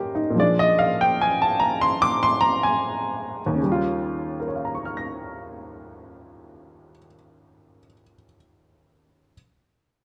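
Sophisticated and warm, this solo jazz excerpt moves at an unhurried 74 BPM in 4/4 with a swung eighth-note feel, centred on Eb mixolydian and tuned slightly below standard pitch at A4 = 439 Hz. A single upright piano carries everything from 0.0 to 9.3 s, spanning Eb2 to Bb6 with a woody, slightly detuned character, short sustain and an up-front, present placement, touching a Bb7 chord early and moving to an Eb9 at 3.6 s as a new section begins. The performance was captured live in one room and sits in a fairly wet studio reverb.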